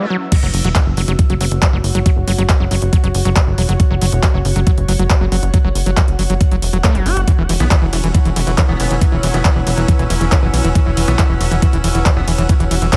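Intense and alien, this psychedelic trance drop at 138 BPM in a straight 4/4 runs from 0.3 seconds, driven by an overdriven, knocking electronic kick up front and an overdriven electronic drum kit with bright hats, handclaps, crash and ride cymbals. A punchy, funky, wave-folded analog bass plucks low underneath, while a squelchy, gritty acid bass riff with cassette-tape character and tape echo runs throughout, and a soft, breathy pad with ring modulation and a noise layer drifts above, the acid bass and pad both breathing with sidechain pumping. From about 7.6 seconds a metallic, aggressive FM wobble bass with 12-bit sampler grit and delay enters in the background, joined by a bubbling stepped-filter texture holding sustained chords over harmony that has just shifted from F#5 to E5.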